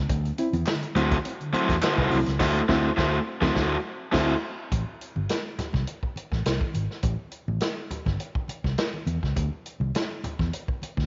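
This cool, funky excerpt in A dorian at 103 BPM opens on a punchy fingered electric bass. It is joined almost at once by mellow, reedy electric piano stabs with a fast tremolo over a D9 chord, a distant, roomy big-band drum kit with a boomy kick, hi-hat, crash and snare, and very quiet, bright congas. A brief, hollow group handclap and an overdriven semi-hollow guitar up front enter, the guitar from 1.0 s, and the band hits an accent before guitar and piano stop at 4.3 s, leaving bass, drums and congas to carry Am7 and Dsus2 in a light small-room reverb with a softened top end.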